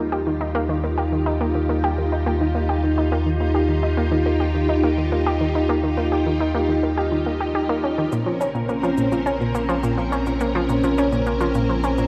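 Lush, vintage string-machine chords with a slow attack and ensemble chorus open this hypnotic, mysterious piece of sequencer-driven space music at 105 BPM, joined from the start by a round, nasal analog pluck riff with chorus and delay and a deep sine sub bass. The harmony moves from Ebadd9 to Bbmadd9 at 8.1 seconds, where soft electronic shaker and woodblock with delay enter in the background. A wet plate reverb and the warble and pitch drift of worn cassette tape give the whole fragment a hazy, aged sheen.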